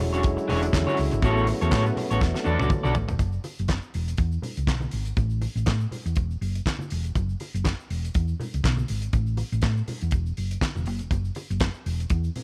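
A slightly broken-up, picked electric guitar with subtle chorus and a mellow French horn section with light vibrato open this sultry, danceable disco excerpt over a dark, round hollow-body bass, then fall away by 3.2 seconds after a drum fill, leaving the bass, a dry, damped 70s drum kit with fat snare, tight kick, hi-hat, toms and handclaps, low-tuned ringing congas in the background and a very quiet, grainy tube shaker to carry the spare groove with little reverb.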